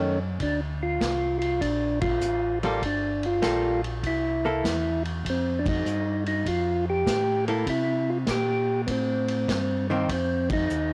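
A percussive tonewheel organ carries the melody through a slow rotary speaker and cassette grit, over a hollow-body archtop guitar comping in clean, picked, compressed tones and a round, mellow second organ holding the bass line with chorus vibrato. A vintage drum kit joins at 0.4 s with punchy kick, dark cymbals and a saturated, rolled-off sound, swinging at 99 BPM as the trio hits band accents together over chords moving from Bbmaj7 through Gm9 and C6 to F7. This bluesy, greasy soul jazz fragment sits in a small, lightly reverberant room with the homespun character of a cassette recording.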